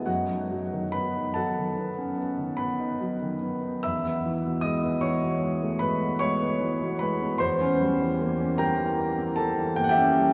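A long cathedral reverb, with a five-second decay, surrounds the sound, while a small-room ambience keeps it close. This short excerpt, cut from a longer classical piece, is a romantic nocturne for solo piano, tender and dreamy in mood, moving in a lilting 9/8 with free, breathing rubato. A concert grand carries everything alone from 0.0 to 10.3 seconds, spanning E2 to E6 with deep, resonant bass and long sustain. Its tone is intimate and polished, placed up front and present, and the soft clicks of the action can be heard beneath the notes. The harmony drifts from B7 over F# to a resting E chord around 3.8 seconds, then clouds over into a diminished seventh near 7.4 seconds.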